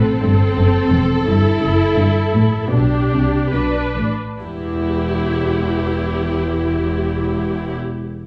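Up front, a lush, vibrato-laden viola section with a soft attack supplies the upper harmony of a bittersweet, longing cinematic passage in a rubato 3/4, slowing through its opening seconds before settling on E minor at 4.4 seconds, underpinned by a rich, smooth bowed cello section and a woody double bass section, all bathed in the reverberant glow of a recital hall in this fragment of a longer piece.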